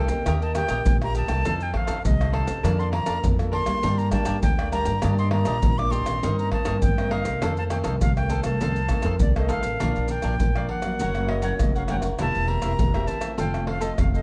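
A concert flute, cavaquinho, nylon-string guitar and upright bass open this lively, sunny samba and choro passage together at 0.0 seconds, cut from a longer piece, with maracas, pandeiro, surdo and tamborim joining at 0.1 seconds at a straight 101 BPM in 4/4 and Bb major. The airy flute carries the melody with vibrato, a crisp attack and an expressive touch, while the picked cavaquinho adds warm, crisp acoustic accompaniment and the fingerpicked guitar fills in full-bodied, deep classical tones from fresh strings. Underneath, the pizzicato upright bass on gut strings sounds woody and thumpy, and the percussion sits up front in a small room, played with soft hands over a deep surdo. The harmony moves through Eb, F7, Bbmaj7/F, Gm, Ebmaj7 and Cm7/G before a new passage at 9.8 seconds shifts to Bb, Gb, C7/E and F. Light reverb and a dark, warm production give the ensemble a cozy glow.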